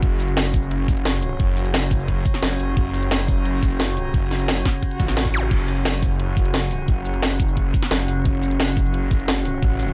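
Dark technical drum and bass at 175 BPM, mechanical and futuristic, cut from a longer piece, where an eerie, metallic FM drone holds sustained chords with chorus, built-in reverb and sidechain pumping over a thick, detuned sawtooth bass with chorus and tube saturation, an overdriven drum kit with cracking snare, bright hats, shaker and crash cymbal, a knocking overdriven electronic kick that stops at 9.7 seconds, and a brief electronic swell and zap at 5.0 seconds, all in a dry mix with the bass and drum kit up front.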